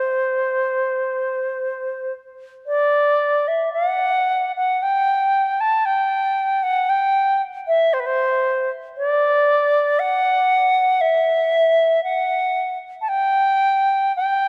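The rhythm moves in a loose triple metre, with uneven beats and a rubato feel that lets each phrase breathe at its own pace. This is a mournful, haunting fragment of Celtic folk, cut from a longer piece and carried entirely by a solo baroque flute. The flute has a woody, reedy tone with a pure edge and a soft attack, and vibrato colours its notes as it sings between B4 and A5. A brief opening phrase gives way at 2.7 seconds to a longer passage that runs until the flute stops at 14.5 seconds. The instrument sits up front yet carries a distant quality, wrapped in the long, wet reverb of a church that lets every note hang in the air.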